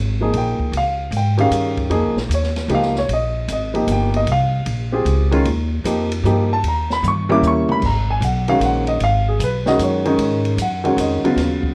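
Modal jazz in a swinging 3/4 at 152 BPM, cool and searching, with a woody, thumpy pizzicato upright bass and a clear, up-front baby grand piano comping over Bbm7, Cm7 and Eb7b9 before a drum fill at 7.0 seconds carries the music into G# dorian on G#m11 at 7.8 seconds, while an open jazz kit with dark cymbals and a boomy kick sits back in a large studio reverb, all coloured by worn cassette tape with a warbly pitch drift.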